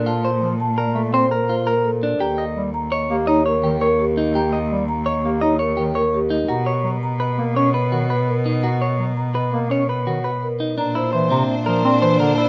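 Classical minimalist pattern music with a hypnotic, bright mood, this excerpt moves at 168 BPM in a straight 6/4. Soft-mallet marimba carries the melody with a mellow, round tone, while a clean, picked electric guitar sits up front with compressed arpeggios, and a single close cello, rich and smooth with vibrato, holds the bowed bass line beneath them. A distant, roomy bass clarinet enters at 0.4 seconds as accompaniment, adding a classical-style solo colour under the harmony as it shifts from A#maj7 through D#7 to Bmaj7. At 10.8 seconds the music turns to A#add9 as a distant French horn joins on a second line and a symphonic violin section adds intense, bowed sustained chords with light vibrato, set lower in the mix. Light reverb gives the whole ensemble a modest sense of space.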